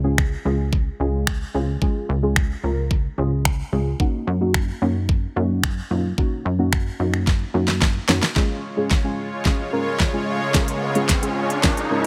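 Dance-pop in a straight four, upbeat and euphoric, cut from a longer piece. A deep, mellow chord stab with a dark sub-octave weight, treated with chorus and phaser, pumps against the beat over a Db to Gb6 progression. Beside it, a punchy, funky analog bass with a saturated filter pluck and detuned, wave-folded edges sits up front until it drops out at 8.2 seconds. The electronic pop drum kit drives throughout with a knocking kick, fat snare, crisp hats and finger snaps, closing the opening section with a drum fill. At 8.4 seconds a lush, detuned supersaw pad swells in with a soft attack and long release as the build-up begins, and a background riser joins at 9.6 seconds. Light reverb and a digital ambience give the mix a polished, produced sheen.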